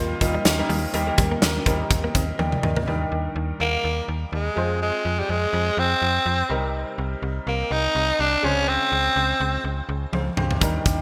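1980s-style pop in Eb major at 124 BPM, this uplifting, romantic excerpt moves with a light 16th-note swing over chords from Eb and Ebmaj7 through Fm, Cm7 and Dbmaj7. A clear, open concert grand piano carries the accompaniment throughout, its deep bass touched by subtle chorus and shimmer reverb, while a snappy FM bass with a metallic, fast attack and decaying notes runs underneath. A clean, direct-recorded electric guitar picks a compressed, very quiet riff only in the opening 2.8 seconds, alongside a big, punchy rock kit that sits up front and closes its first phrase with a fill before dropping out. From 3.6 to 9.6 seconds a breathy tenor saxophone takes the solo melody, raspy and gritty with vibrato, bathed in shimmer reverb and delay. The drums return at 10.1 seconds with another fill, all framed by a lush hall reverb and bright digital production.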